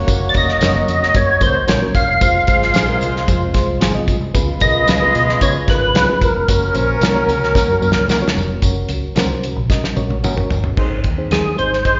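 A fat, percussive tonewheel organ carries the melody up front, its key click and third-harmonic percussion turning slowly through a rotary speaker with chorus vibrato, slapback echo and analog delay, before dropping out at 8.1 seconds and returning at 11.3 seconds. This is a danceable, uptempo 1960s-style soul cut at 112 BPM in a straight 4/4, moving through Gb, Fm, Db7 and back to Gb before landing on Ab near the end. Underneath, a cloth-damped, thuddy drum kit sits up front with a fat snare, tight kick and dark cymbals, adding fills, while a round, foam-muted fingered bass punches out the low end. A reedy electric piano with fast tremolo and a smooth, tightly voiced horn section with light vibrato fill in the harmony, joined in the background by slightly broken-up, picked guitar stabs from a small old amp and a jingly tambourine, each carrying slapback echo. The whole performance comes across as a live gig heard through the venue's PA in a recital-hall space, with light reverb, a dull, rolled-off top and a warm character, cut from a longer piece.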